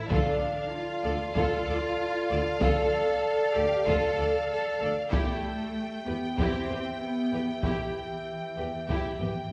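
Cinematic, epic orchestral film score in D dorian at 96 BPM in a straight 4/4, dark in mood, cut from a longer piece. Up front, a lush, bowed cello section carries the bass with smooth, even vibrato, joined by a distant, rich double bass section, while a violin section sings the melody high above with a smooth top. A second, more focused violin line sits in the background, and a rich, intense viola section fills the accompaniment. A roomy French horn section holds sustained chords from a distance, as the harmony moves from Dm to Em at 5.1 seconds. A taiko ensemble struck with hard sticks drives the pulse throughout, timpani on medium mallets sounds only in the opening second, and a drum fill closes the passage at 9.2 seconds, all bathed in a wet scoring-stage reverb.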